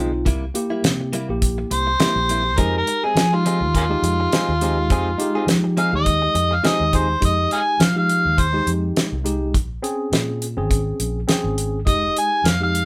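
A worn, slightly out-of-tune tine electric piano, clean compressed guitar stabs and a round, foam-muted electric bass open this brooding, smoky straight-eighth soul blues in F minor at 103 BPM. A dry, up-front 70s drum kit with a fat snare and tight kick joins almost at once. A gritty, overdriven harmonica enters at 1.7 seconds with light vibrato, tongue slaps and scooped notes, over chords moving from C7 to Fm7 and Bbm7. After the guitar stops, the harmonica takes a solo from 7.2 seconds, captured with light reverb in the sound of a band playing live in one room.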